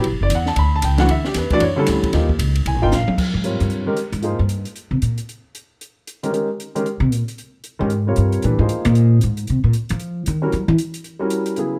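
A brisk modal jazz trio opens this fragment of a longer piece at 229 BPM in 4/4, with a swung eighth-note feel and an open, searching mood. Piano, upright bass and drums sound together from the start, the concert grand sitting up front with an intimate, natural tone, deep low register and audible action noise as it comps through rich extended chords. A drum fill at 2.9 s leads into the key of Ab major at 3.2 s, where the upright bass takes a solo. Plucked on steel strings, the bass is woody, growly and warm, placed up front in the mix. The acoustic kit, recorded in a studio room, colours the trio with ride and crash cymbals, hi-hat, toms, a high-tuned snare and a boomy kick, all under a light reverb.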